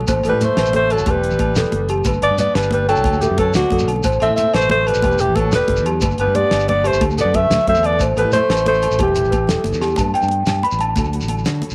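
A breathy, whispered alto saxophone carries the melody up front from 0.3 to 9.8 seconds in this carefree, danceable highlife excerpt in G major, moving at 121 BPM in a straight 12/8, with a distant tenor saxophone adding a second line behind it. A delicate, bell-like celesta plays arpeggios through tape echo, and a round, punchy fingered bass anchors the Am–Em–G–D cycle alongside a very quiet, full-bodied nylon-string guitar. A damped 70s drum kit with a fat snare drives the groove along with bright congas, ringing agogo bells and a grainy shekere, and after a drum fill at 9.8 seconds the celesta takes a solo from 10.0 seconds, all in light reverb and small-room ambience.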